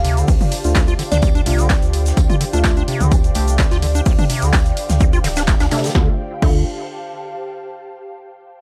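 A brief glassy FM bell melody with tape echo rings out at the top of this driving, trippy acid house cut in D minor at 127 BPM, over a warbling, nostalgic tape-like pad, a squelchy, resonant square-wave acid bass riff with overdrive and analog delay, a round sine sub bass that pumps to the sidechain, and a punchy overdriven analog drum machine with crash, claps, hi-hat, snare and toms, alongside a polished, airy metal kit of hi-hat, snare and tambourine in the background. An ethereal, detuned pad with ensemble chorus floats above, a grainy egg shaker ticks along from 0.2 seconds, an up-front overdriven electronic kick lands at 0.3 seconds, and soft, dark chord stabs with ring modulation and a moving notch arrive at 0.6 seconds. The dark, lightly reverberant mix then thins to the lingering airy pad by 7.8 seconds, where this excerpt is cut from a longer piece.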